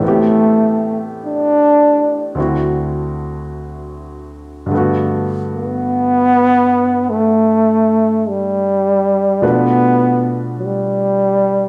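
A close-miked trombone and a baby grand piano open together on this intimate, tender jazz ballad fragment in G major, a slow 51 BPM swing taken from a longer piece. The trombone carries the melody up front with a soft attack and vibrato in a jazz style, while the natural-sounding piano accompanies with short-sustained chords moving from Am7 through D9 and Gmaj9 to Bm7b5. The two play live in one room, and a large studio reverb adds a wet, spacious glow to the 11.7-second passage.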